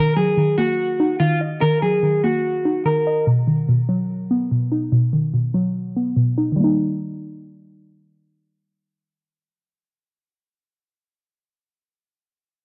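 A half-time hip hop groove in 4/4 sets a hard-hitting, menacing mood in this clip taken from a longer piece. A dark, slightly broken-up electric guitar, fingered and placed up front, carries a short melody through its upper-middle register and stops at 3.2 s. Beneath it, a warbling, lo-fi pluck built from detuned square and sawtooth waves with a noise layer plays the accompaniment across a broad range until 11.1 s, thickened by chorus and shaped by a filter sweep that runs until 6.6 s, where the music moves into a new section. The harmony moves from Ebm to B and then lands on Eb. The production is dry and gritty, with transformer saturation, a low-pass filter, and a light digital reverb lending a dusty, hardware-driven character.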